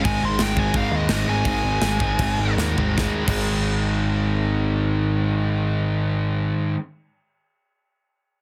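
A heavily compressed, radio-style sound with little reverb frames this upbeat, rebellious punk rock fragment in Ab major at 149-176 BPM, which slows down through its opening while a dark, high-gain lead guitar melody rings out until 2.5 seconds above three riffing guitars (a hollow-body overdriven semi-hollow, a bright, scooped distorted electric and a very quiet double-tracked crunchy one), as a growling, overdriven picked bass anchors the low end and a tight, polished, airy metal drum kit with bright cymbals plays a fill from 2.6 seconds before dropping out at 3.4.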